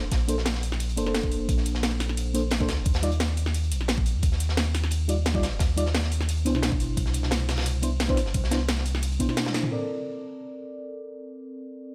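Dreamy and uplifting, this liquid drum and bass cut runs at 175 BPM in 4/4 with a straight feel, sitting in Bb major and moving through Bbmaj9, Eb5 and Cmaj9 before landing back on Bbmaj9 at 9.7 seconds. A deep, round sine sub bass sits up front from the start, while a knocking electronic kick drives the groove alongside a layered drum and bass kit with a cracking snare, metallic hats, ride cymbal and toms, both carrying a tape-warm character from being re-recorded in a small room. Beneath them, a gritty, saturated breakbeat kit with a medium-tuned snare and rolled-off top adds crunch, its hats, snare and room filtered to thin the low end. A soft, full-bodied FM electric piano with a noise layer and dark tone enters at 0.3 seconds, colored by chorus, phaser and dub echo and ringing on after the drums stop. A drum fill and band accent at 9.5 seconds close the drop and give way to a brief, sparser passage where the piano rings out in light digital ambience.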